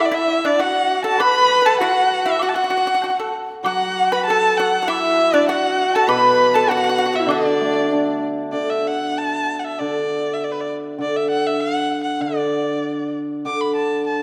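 A clear, up-front erhu with vibrato and portamento carries the melody throughout this pastoral, graceful Chinese traditional chamber piece in 2/4 at a rubato 98 BPM in D gong mode, joined at the start by an airy, buzzing large dizi, a dry, percussive fingerpicked pipa, a husky horsehead fiddle and a very quiet woodblock; a shimmering, ringing hammered dulcimer enters at 3.6 seconds, the fiddle, dizi and pipa fall away at 8.2 seconds, and a concert hall reverb with a 2.2-second tail surrounds the ensemble.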